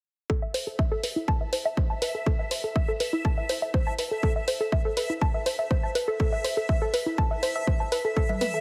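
A punchy, up-front electronic kick drives a straight 4/4 at 122 BPM alongside a tape-warm electronic hi-hat in this emotional, driving progressive house excerpt in A minor, where a soft, round, detuned pluck with a dark edge plays chorused, sidechain-pumped arpeggios from E4 to A5 with dub echo from 0.3 s on a single Am chord, a dreamy reversed granular texture swells on a bright, sustained E5 from 1.0 s, electronic congas and toms pump briefly at 8.3 s, and the whole sits in light reverb and digital ambience with a heavily compressed radio sound.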